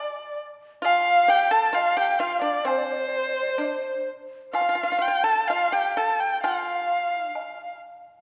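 A rich, bowed erhu sings the melody up front with vibrato and smooth portamento, while an airy, bamboo-toned low xiao carries a second line in the background and a dry, percussive pipa plucked with fingerpicks adds a lower second line. This is graceful, pastoral Chinese traditional chamber music in a slow, rubato 2/4 at about 65 BPM, tuned to A4 = 443 Hz. A woodblock enters quietly behind the ensemble at 0.9 seconds, and a wet scoring-stage reverb surrounds this brief excerpt from a longer piece.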